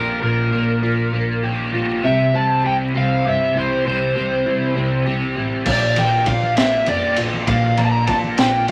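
An overdriven slide guitar carries the melody up front in this kaleidoscopic, trippy psychedelic rock excerpt, moving at 66 BPM in 6/8 over Bb6 and C chords, alongside a bright, double-tracked crunchy guitar riff run through a rotary speaker. Behind them sit a buzzy vintage combo organ holding chords in spring reverb and a clear, bowed double bass with light vibrato. At 5.7 s a gritty breakbeat kit with a high-tuned snare and punchy kick arrives with damped, very quiet congas, all in a wet studio ambience dusted with vinyl crackle.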